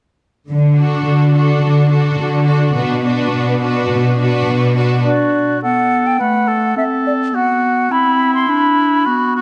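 Heard in a moderate scoring-stage reverb, this adventurous, heroic film-score cut opens at 0.5 seconds with a close, focused cello section up front carrying the bass beneath a lush violin melody set in the background, a distant, intense second violin line and a smooth, even viola accompaniment. Then at 5.0 seconds an up-front woodwind trio enters: a hollow flute and a punchy clarinet arrive first, and a soft-attacked oboe with light vibrato joins at 5.1 seconds. Each plays a second line over D and B minor chords until about 9.4 seconds.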